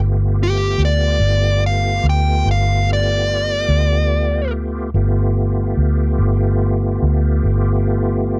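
Swaggering and gritty, this short blues excerpt moves at a slow 48 BPM in a straight 12/8, sitting on a single G9 chord in G mixolydian. A vintage fingered electric bass anchors the low end throughout, its foam-muted tone round and dark, placed up front and loudest in the mix. Above it, a bright tonewheel organ holds sustained chords, its reedy, clean voice carrying key click, chorus vibrato and a slow rotary speaker, sitting further back. An overdriven, picked lead guitar with a dark, smooth tone carries the melody up front from 0.4 to 4.5 seconds, spanning G4 to G5. The sound is dry and close, like a 1970s studio session with little reverb, giving the parts an intimate, gritty presence.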